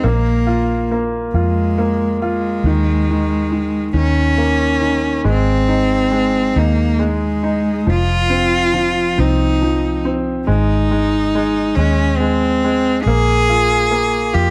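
A rich, bowed cello sings the melody from the first moment, close and up front with smooth vibrato, over a bright, woody upright piano accompaniment with long sustain and a dark, round, foam-muted electric bass that sits punchy and forward. This tender, heartfelt pop passage in Ab major moves slowly at 46 BPM in a straight 6/8. A light small-room ambience frames all 14.5 seconds of this fragment, which is cut from a longer piece.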